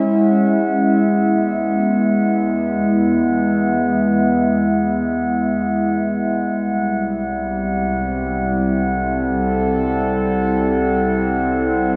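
A vast, echoing space wraps this ambient piece in a wet cathedral reverb, so every sound hangs long in the air. It is a warm, luminous excerpt in free time and E major, tuned to A4 = 435 Hz and cut from a longer work. A warbling, detuned tape-like pad sits up front with sustained chords, its dark, full-bodied tone softened by chorus and a nostalgic lo-fi character. It moves from an E chord to C6 at 6.5 seconds. Beneath it, a clear symphonic double bass section fades in from 0.1 seconds, bowed and focused, with a lush ensemble vibrato low in the register. High above, a glass harmonica holds a single pure, airy tone with a gentle beating shimmer, adding an ethereal glint to the haze.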